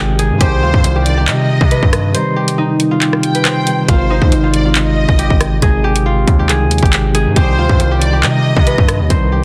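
Drill-style hip hop at 138 BPM in a half-time feel, this dark, ominous excerpt in C harmonic minor moves from Cm to Ab and back, with a ringing, fingerpicked concert harp carrying the melody through a low-pass filter and delay over a mellow, clean tine electric piano. A saturated, aggressive 808-style bass with a noise layer sits beneath an up-front electronic drum kit of hard-clipped kick, bright hi-hats, handclaps and rim clicks, though the kick drops out from 2.1 to 3.9 seconds. A distant, lush violin section adds a second line with vibrato and portamento, all in a dry, dense, heavily limited modern mix.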